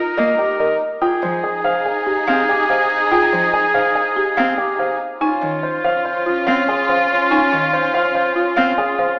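A straight 5/4 pulse at 143 BPM drives this bright, propulsive stretch of minimalist classical pattern music, cut from a longer piece. It moves from a rootless Cm7 to Fm7 and then Dbmaj7. A polished, up-front baby grand piano carries the melody over a clear, vintage-toned oboe second line with soft attack and vibrato. A lush bowed string section holds sustained chords while a woody, rustic folk marimba with medium mallets plays dry arpeggios. A rich, smooth solo cello adds close, bowed accompaniment from 0.2 to 8.7 seconds, all set in a wet scoring-stage reverb with a small-speaker sound.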